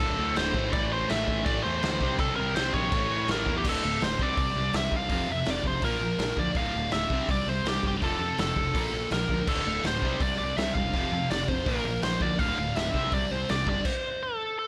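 This short, urgent punk rock excerpt kicks off at 164 BPM in a straight 4/4, with every part starting together at once. Up front, a biting lead guitar carries the melody with overdrive and a touch of delay, sitting high between G4 and F5. The raw garage drum kit is also forward, its punchy kick, medium-tuned snare, hi-hat and crash cymbal sounding gritty and saturated with a rolled-off top in a stone room. Beneath them, three rhythm guitars churn out the riff in the background: one warm and overdriven, one compressed and distorted, and a heavy high-gain part that is double-tracked, all joined by a fuzz-laden, bright and punchy picked electric bass. The chords move through power-chord shapes around D5, C5, F5 and Bb, and the band cuts out together at about 13.9 seconds, leaving the lead guitar to ring until 14.7 seconds in a dry sound with little reverb.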